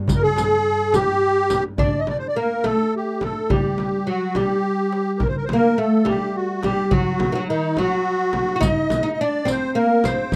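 Arabic maqam ensemble music in a hypnotic, longing 6/8, cut from a longer piece. A bowed double bass holds a smooth, vibrato-tinged drone for the opening moments, while a deep frame drum struck with hard hands, a crisp metal-shelled darbuka set back in the mix and the bright jingles of a riq start the pulse. Up front, a reedy musette accordion with a shimmering, dark tone carries the melody throughout. At 1.8 seconds the bass gives way to a woody, fretless oud, plectrum-plucked on double strings, which plays a second line alongside the accordion. After a brief drum fill at 8.1 seconds, the riq returns at 8.6 seconds for the closing stretch. The sound is dry and close, in the manner of a 1970s studio recording with light reverb.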